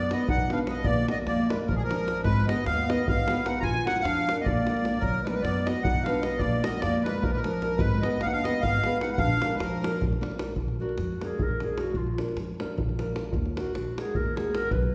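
A reedy, sweet accordion with light tremolo tuning carries the melody up front over a dark, distant clarinet second line, woody pizzicato upright bass, fingerpicked flamenco guitar with audible finger squeak and a deep, close davul in this restless, bittersweet Balkan wedding-band tune in 7/8 at 302 BPM in Bb phrygian dominant, cut from a longer piece and set in a resonant recital-hall reverb, until the accordion stops at 10.0 seconds and the roomy, classical-style clarinet takes a solo from 10.6 seconds to the end.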